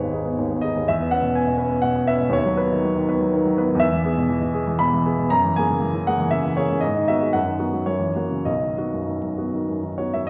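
A woody upright piano opens alone on a G sharp minor chord in a passionate, lyrical romantic character piece in three-four time, its rubato phrasing drifting through E6, F sharp 9 and G sharp minor 7 harmonies before settling on a B chord at 8.5 seconds. The piano's warm, natural tone spans from deep bass notes to its upper register, heard from further back on a reverberant scoring stage. A vinyl crackle sits beneath this brief 10.3-second passage, cut from a longer work.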